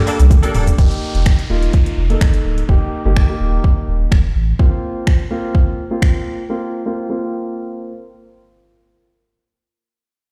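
Dance-pop with a summery, euphoric lift at 126 BPM in Bb major, this brief cut opens with a dark, mellow grand piano with audible action noise, pumping under a filter sweep, joined almost at once by a twangy, clean electric guitar riff and a grainy, very quiet tube shaker, both gone by 0.8 seconds. Meanwhile an up-front deep house kit with a deep kick, metallic hats, snaps, toms and shaker plays a drum fill, a round sine sub bass pumps beneath, and an electronic downlifter passes through, all heard as if played on a big sound system in a bare stone room.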